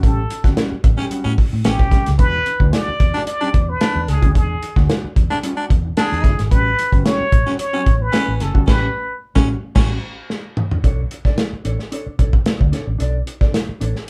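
Funk at 111 BPM in a straight 4/4, this cool, driving excerpt is cut from a longer piece and played live by a band in one small room with a moderate reverb. A plunger-muted trumpet carries the melody with a breathy, whispered wah-wah tone that sits distant and intimate. A raspy, growling baritone saxophone enters at 1.0 seconds with a gritty, close-miked second line. Underneath, a mellow, clean, compressed electric guitar plays accompaniment, a vintage foam-muted fingered bass adds round, punchy low end, and an up-front soul drum kit contributes dark cymbals and a punchy kick. The harmony moves between A13 and E9 until a band accent, with a drum fill in its final moments, closes at 10.8 seconds, where the music shifts to a Bm9 chord.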